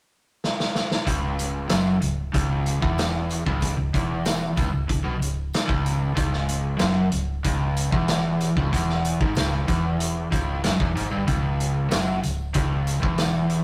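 Hypnotic, trippy psychedelic rock at 94 BPM in C# minor, where a saturated, gritty vintage drum kit opens with a fill at 0.4 seconds before a dark, double-tracked overdriven guitar riff, a round fingered electric bass and a very quiet, jingly tambourine join at 1.1 seconds on a C#m chord, all in a rough rehearsal-room recording with tube saturation and moderate stone room reverb.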